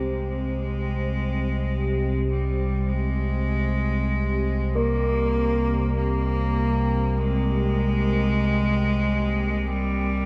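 Bathed in a huge, cavernous reverb, this dark ambient drone excerpt moves at a slow 49 BPM in 4/4 over a single Bb5/C chord, with a desolate mood. An ominous, rumbling low drone sits up front alongside a moody, detuned, ring-modulated pad with chorus that fades out across the passage. A nasal, earthy solo cello fades in, its bowed melody touched with light vibrato and tape echo, and at 4.8 s a metallic, airy singing bowl struck with a wooden striker rings in the background with slow beating.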